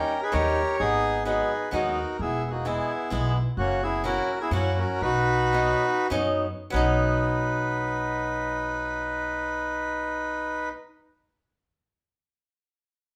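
Whirling and charming, this short musette waltz in B major moves in a swung 3/4 at a tempo between 92 and 131 BPM, slowing down from 3.6 to 6.7 seconds before a new section begins. A reedy, hollow accordion carries the melody up front with a smooth, dark tone, while a second accordion with a single reed and dry tuning adds a clear line beneath it. A bright, boxy acoustic guitar picks a swing-style accompaniment, its finger squeaks audible. From 0.3 seconds an upright bass joins with woody, thumpy gut-string pizzicato that sits prominently in the mix. The harmony passes through D#7, G#m7, E and F#7 before settling on Badd9, and the band plays live together in one room, bathed in a wet large-studio reverb.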